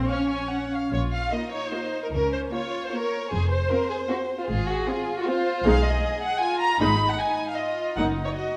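A veiled, con sordino violin section carries the melody in this stormy, urgent excerpt from a quick classical-period movement for string orchestra in 3/4 with a rubato feel, set over a second muted chamber violin line, a lush, close viola section, a distant cello section in the background and a dark, up-front double bass section that enters at 0.9 s, within the wet reverb of a recital hall.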